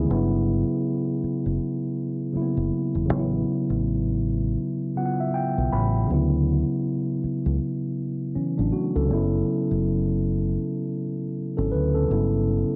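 R&B with a neo-soul lean, this introspective, late-night excerpt moves at 80 BPM with a swung sixteenth feel, as a mellow tine electric piano heard through its built-in speakers carries the chords from Gmaj7 through A69, Dmaj9 and F#5, adding a fill between 4.6 and 6.1 seconds, while a round, punchy fingered electric bass sits dark and up front beneath it in a dry, intimate cassette home recording.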